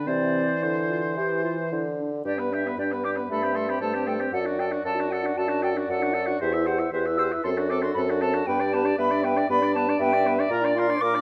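A quick classical-period movement for wind quintet, spirited and cheerful, moving with a flexible, rubato feel in 4/4. The silver concert flute carries the melody, its pure metal tone crisp in attack and shaded with expressive vibrato, though it sits at a distance in the picture. Beneath it the oboe plays a clear second line with light vibrato and a soft attack, sounding roomy and set back. The clarinet's smooth-topped tone stays in the background, while the French horn, clear and present, adds accompaniment. The bassoon anchors the bass up front with a light vibrato, and the quintet is captured by close, detailed microphones in light reverb. The harmony moves from C through G and D7/F# before settling on G and turning unexpectedly to Bb at 10.5 seconds.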